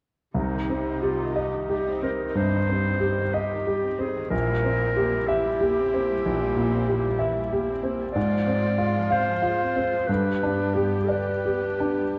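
An intimate grand piano with audible action noise carries the melody from 0.3 seconds, alongside a close-miked solo clarinet on a second line and a smooth cello section in the background, soon joined by a focused, bowed viola section with vibrato, in this passionate, tragic romantic movement for piano and orchestra in C minor at 61 BPM in a rubato 12/8, its moderate scoring-stage reverb colored by the warbly pitch drift of worn old cassette tape.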